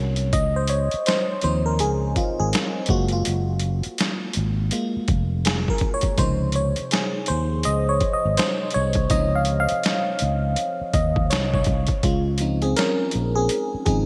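A swung sixteenth-note groove in 4/4 at 82 BPM sets a smooth, relaxed neo-soul and R&B mood in D-flat major, in this excerpt cut from a longer piece. The boom bap sampler-style drum kit enters at 0.2 s with a thumpy kick, a medium-tuned snare and hi-hat, sounding pitched down, compressed and gritty, with overdrive and gated reverb, and it sits up front. The fretless electric bass holds the low end from the start, amped and growly. From 0.3 s the FM electric piano takes a solo through to the end, glassy with a bell-like, fast attack, a noise layer and decaying tones colored by chorus and phaser. Its harmony moves from Dbmaj9 to Gbmaj9 and back to Dbmaj9, with a new section arriving at 12.0 s. A moderate plate reverb with a long tail and bright 1980s-style digital production frame the whole recording.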